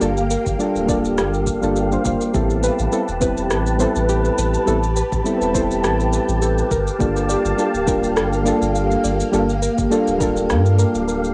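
A home cassette recording with light reverb and nothing above 10.9 kHz frames this short cut from a longer sunset chillout piece, a smooth, wistful groove at 103 BPM in A phrygian with a gently swung 16th feel. Warbling, vintage electric-piano-like synth keys with chorus and tape echo carry the accompaniment alongside silky string-machine chords treated with phaser and ensemble chorus, while a soft, round pluck plays arpeggios in the background and a deep sine sub bass sits up front. A layered electronic shaker and rim click run throughout, joined by a tape-colored electronic kick from 0.5 to 10.3 s, as the harmony moves from Gm9 to Am9 and back to Gm9 at 6.7 s.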